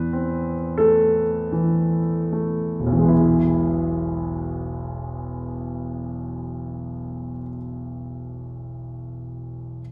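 A romantic classical nocturne for solo piano in E major, this brief fragment from a longer piece moves in a very slow, rubato 6/8 at around 24-31 BPM, its mood nostalgic and dreamy. A clear concert grand with deep bass and long sustain sits up front, playing from E1 to B4, and the pulse slows through the opening 3.1 seconds over an A minor chord on E before settling onto E major. The piano is heard from further back in a recital hall whose wet, lingering reverb surrounds every note.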